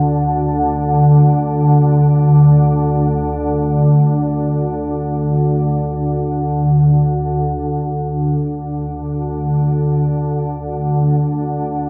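Ambient piece with a cavernous, ominous mood, cut from a longer work, in which a calm organ-like drone plays alone throughout the 11.9 seconds, sitting low between D2 and D3 and tuned to A4 = 439 Hz. Its nasal, unison tone, built from sine and triangle waves, swells in slowly, sustains and fades on a long release, colored by ensemble chorus, built-in reverb and delay while staying up front. A soaking cathedral reverb with a 5.6-second decay surrounds it, and the music moves into a new section at 7.5 seconds.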